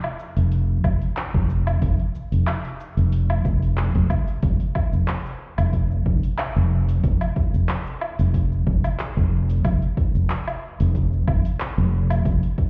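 Heard as if muffled through a wall with club reverb, this hypnotic organic downtempo excerpt at 92 BPM opens with an overdriven, layered electronic drum kit of handclaps, hi-hat, shaker and woodblock, swung lightly on the sixteenths, before a bright, punchy fretless electric bass sits up front from 0.4 seconds and an overdriven, punchy electronic kick joins at 0.8 seconds.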